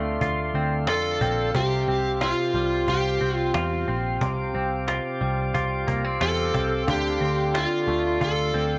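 An overdriven slide guitar, played with fingerpicks and treated with digital delay, carries the melody from 0.9 seconds in this hazy, ethereal dream pop passage at 90 BPM, moving from Dm7 to Csus4 and back to Dm7. Beneath it, a bright, hollow-bodied semi-hollow electric guitar picks chorused, delayed arpeggios, while a mellow, flute-like tonewheel organ holds sustained chords through a slow rotary speaker. A round, foam-muted vintage electric bass and a woody cajon with faint snares ground the light reverb, and a pure, very quiet FM synth bell adds brief decaying touches of texture.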